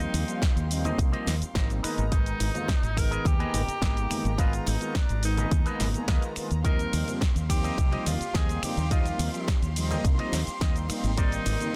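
A punchy, layered electronic kick drum sits up front from 0.4 s, driving this groovy, feel-good nu-disco cut at 106 BPM in a straight 4/4, in Eb major with tuning at A4 = 444 Hz. Over it, a bright, vintage-toned tenor saxophone carries the solo melody in a pop style, with vibrato, scooped notes and a touch of delay. A round, dark synth brass with a sawtooth edge, filter sweep and chorus pumps against the kick, while a rich, biting symphonic string section holds bowed chords with light vibrato in the background. A fingered electric bass, direct, amped and foam-muted, anchors the low end, and a twangy, picked guitar riff through an envelope filter adds analog chorus, delay and 12-bit sampler grit from further back. The house kit brings a punchy snare, crisp hats, ride, shaker and finger snaps, with very quiet, ringing bongos and congas played with hard hands in a distant, large room. The harmony moves from Eb6/9 to Abm(add9) at 1.8 s, returns to Eb6/9, and lands on Abmaj9#11 at 11.2 s, all under digital ambience and a dense, heavily limited modern master in this section cut from a longer piece.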